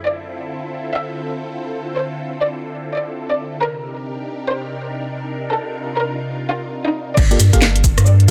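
A skippy two-step garage groove at 135 BPM in 4/4, swung on the sixteenths, this short cut from a longer piece sits in G minor with a soulful mood. It opens on a silky string machine holding sustained chords, its slow attack and long release colored by phaser, ensemble chorus and sidechain pumping. Over it, a dark, woody studio violin section carries the melody up front with vibrato and delay, moving from Dm9 to Cm9. At 7.2 seconds the drop lands on Gm9: a punchy, tape-warm electronic kick and a layered garage kit of cracking snare, hi-hat, rim click, shaker and crash arrive with a thick, saturated sub bass that pumps beneath them. Glassy, bell-like FM electric piano stabs join at 7.3 seconds, chorused and delayed, while a digital ambience surrounds the mix.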